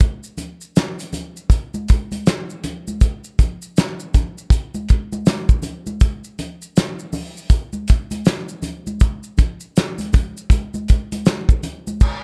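Hip hop at 80 BPM in 4/4 with a swung sixteenth-note feel, this smoky, nocturnal excerpt is cut from a longer piece and runs as a single section. An acoustic, cloth-damped drum kit sits up front, with a fat snare, tight kick, hi-hat and dark crash cymbal, its thuddy sound rolled off at the top. Maracas and congas, played with soft hands, sit further back, bright, compressed and saturated, inside a small room ambience and a dark production.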